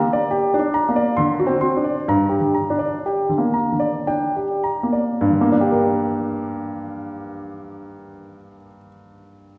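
A warm, up-front baby grand piano plays alone throughout this brief excerpt, a baroque-style suite movement in G minor and 3/4 time, moving between about 51 and 75 BPM with a rubato feel and slowing down over its first 5.2 seconds. The mood is introspective and solemn, with harmony passing from G minor to D7 and back to G minor as the piano ranges from G2 to C6. A wet recital hall reverb surrounds the instrument, giving it the resonance of a church or concert hall.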